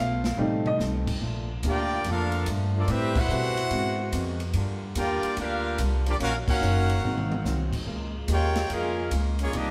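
A swung 4/4 groove at 144 BPM drives this brassy, energetic big band swing excerpt, opening with a drum fill and a short, brilliant upright piano solo over a woody, up-front pizzicato upright bass and a boxy fingerpicked acoustic guitar sitting in the background. A tight, very quiet saxophone section slips in with sustained chords at 1.2 seconds, and at 1.7 seconds a bright, smooth-topped trumpet section takes the melody up front while a warm trombone section with light vibrato carries a second line. Band accents punctuate the passage as the airy kit with its punchy kick keeps time, the harmony moving from F7 through Bbmaj7 and Ebm9 to Db6 in a moderate stone-room reverb that sounds like a band playing live together.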